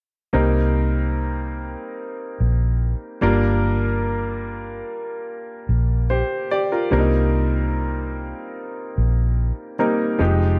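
Lush 1970s-style soul in C minor at 73 BPM, bittersweet and silky, where a clear, intimate baby grand piano with audible action noise and long sustain plays accompaniment over Cm7 and Gm7 chords while a dark, round, punchy foam-muted electric bass sits up front in a small room, the two playing together from 0.3 to 10.6 seconds in this cut from a longer piece.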